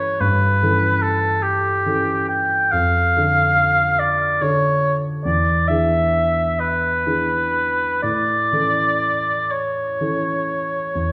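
Classical romantic music in A major for oboe and grand piano, this lyrical fragment moves slowly in 12/8 at 40-49 BPM with a rubato feel, as a mellow oboe sings the melody with light vibrato and a soft attack over a dark concert grand piano whose deep bass and smooth, vintage tone carry the accompaniment through A7/G, Dm/F and E7 to A, both parts heard throughout in a moderate stage reverb.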